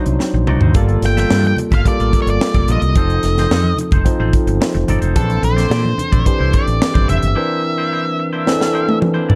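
With a dark, dry production, this upbeat, urban fragment of polished 1980s jazz-funk pop sets a barky, lightly overdriven tine electric piano comping up front and a twangy, compressed electric guitar riff under lush chorus against a round fretless bass, a crisp fusion drum kit with a punchy kick, high-tuned snare and fills at 0.2 and 8.5 seconds, and very quiet thick-skinned congas, while an octave-fuzz lead guitar carries a gritty melody from 1.1 seconds over rich extended chords.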